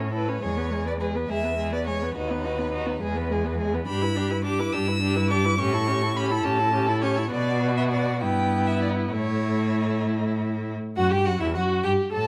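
A first violin carries the melody from 0.1 seconds, its bowed tone rich and expressive with vibrato and portamento, heard at a slight distance. This is a quick, spirited classical-period movement for string quartet in 6/8, moving at about 64-71 dotted-quarter beats per minute with a rubato feel, tuned to A4 = 438 Hz. Beneath it, a second violin plays a smooth, even second line, the viola supplies accompaniment with a polished upper register, and an up-front, focused cello anchors the bass. The harmony centres on E, passing through A7 and Bm before a shift at 11.0 seconds to an Emadd9 as a new section begins. Close, detailed microphones capture the players inside a moderate recital hall reverb, and the lively passage is cut from a longer piece.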